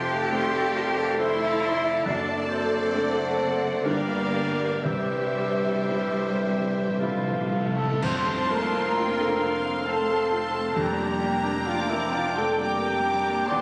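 A lush, passionate romantic movement for piano and orchestra in F major opens with a deep-voiced concert grand and a rich, distant violin section sharing the melody in a rubato 3/4 at around 52-71 BPM. An airy, hollow flute ensemble, a solo oboe, a very quiet clarinet and a close second violin section with portamento weave second lines. Beneath them sit a clear viola section, a bassoon that drops out at 7.6 s, very quiet trombones and mellow French horns holding chords, and an even-toned cello section and a lush double bass section on the bass. At 4.8 s hard-mallet timpani enter with a fill, joined in the background by dark cymbal swells, clash cymbals and concert bass drum, and at 8.0 s a band accent arrives as a vibrato-rich solo trumpet adds stabs while the scoring-stage reverb lends a roomy sheen to a phone-captured sound.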